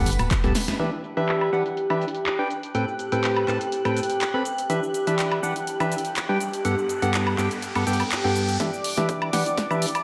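Energetic and soulful, this piano house excerpt moves at 123 BPM in E minor with a light swing, its chords cycling through Gmaj9, Em7 and Am9 in a dreamy mix soaked in plate reverb. A mellow, hollow organ stab sits up front playing the riff, its chorus and diffuse ambient delay pumping against the sidechain, while a silky, detuned analog string pad holds sustained chords underneath with ensemble chorus and vibrato, a filter sweep running across it from 0.8 to 8.6 seconds. A dark, organ-like FM bass appears only briefly at the start, and a very quiet, ringing tambourine and conga layer sounds just at the opening as a drum fill leads into a band accent at 0.7 seconds. The house drum kit carries handclaps, warm hats, shaker, woodblock and a punchy snare through small room ambience, joined by a tape-warm electronic kick that returns at 8.6 seconds. A background riser runs from 5.8 seconds into a closing build-up with another drum fill.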